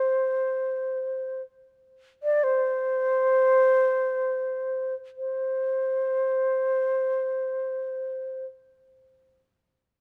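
In free time and easing to a slower pace over its first 5.2 seconds, this pastoral, graceful fragment of a longer Chinese traditional piece features a solo xiao carrying the melody between C5 and D5 until 8.5 seconds, its airy, end-blown bamboo sound heard up front with a soft attack, a straight, unsteady tone and rolled-off highs, captured by close, detailed microphones in light reverb.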